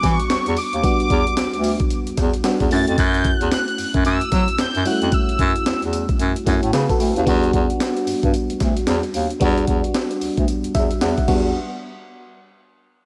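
Soaked in lush hall reverb, this dreamy, confident and slick new jack swing excerpt sets a bold, retro octave-doubled sawtooth lead with chorus, phaser and delay, which stops at 6.2 seconds, over glassy, bell-like FM electric piano that adds a fill at 10.5 seconds, an up-front bass clarinet with a bright tone, vibrato and scooped notes, and a gritty, compressed breakbeat kit of thumpy kick, snare, hi-hat, tambourine and crash.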